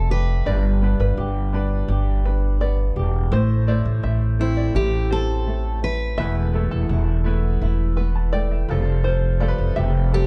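Pop in A minor at a straight 84 BPM, this tender, reflective excerpt from a longer piece sets a full-bodied picked steel-string acoustic guitar melody, with fresh strings and audible finger squeak, over a thumpy, woody pizzicato upright bass sitting up front, a double-tracked, thumb-plucked flamenco guitar, a clear, slightly detuned upright piano and, from 0.5 s, mellow, plunky fingerpicked arpeggios on an open-back banjo, all moving through G, Am, Esus4 and Fadd9 in a dark, warm production with little reverb.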